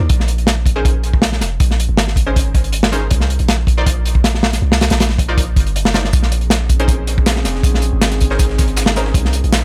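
A raw, dark small-room sound carries this 159 BPM drum and bass jungle cut in Bb dorian, where a crunchy, saturated breakbeat kit with a tight kick sits up front over a deep, mellow 808-style bass with tube saturation, punchy, bright orchestra-hit-like synth stabs with reverb and dub echo enter at 0.8 seconds, a compressed sampler-style break joins in the background at 6.1 seconds, and an airy, breathy chorused pad arrives at 6.4 seconds over the closing Bbm11 chord.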